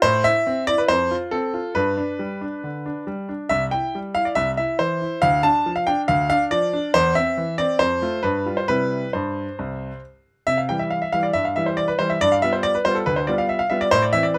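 Close, detailed microphones and a touch of light reverb put a clear baby grand piano up front, intimate and natural, with the noise of its action audible beneath the notes. This is a short cut from a longer classical-period piano sonatina in a straight four-beat metre, playful and graceful in mood. The solo piano plays throughout, ranging from C2 up to A5. The harmony opens on A minor before moving through F and G to settle on C, then travels through D minor, C over E, F and G7 before resolving home around 8.7 seconds. At 10.5 seconds the opening section begins again, and a G7 chord at 12.2 seconds keeps it poised as the recording ends.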